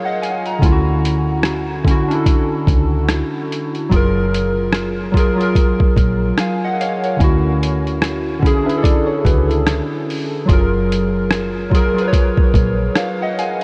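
Warbly, detuned synth keys with a chorus shimmer and cassette-tape haze open this mellow, nostalgic lo-fi hip hop fragment at a laid-back 73 BPM with a swung feel, moving between F#maj9 and Dmaj9. A muffled, pitched-down, overdriven sampler kit with a thumpy kick, hi-hat and rim click sits up front with 12-bit grit, while a dark, foam-muted fingered electric bass enters at 0.6 seconds with round, punchy low notes. From 8.7 to 10.4 seconds a worn, slightly out-of-tune tine electric piano adds a brief second line through analog delay, all wrapped in light digital ambience.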